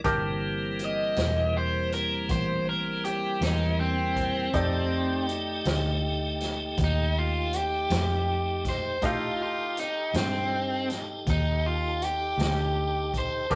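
A biting, overdriven electric guitar takes the lead from 0.8 seconds, its bright picked solo sitting up front in this laid-back, rollicking slow blues at 54 BPM in 12/8, moving from C13 to F13 at 4.5 seconds. Beneath it a brilliant, woody upright piano comps, a piping tonewheel organ holds sustained chords through a slow rotary speaker, and a dark, foam-muted electric bass plays alongside a vintage drum kit with a punchy kick and rolled-off top. A moderate stone-room reverb gives the whole thing a rough rehearsal-room feel, and the piece is cut from a longer performance.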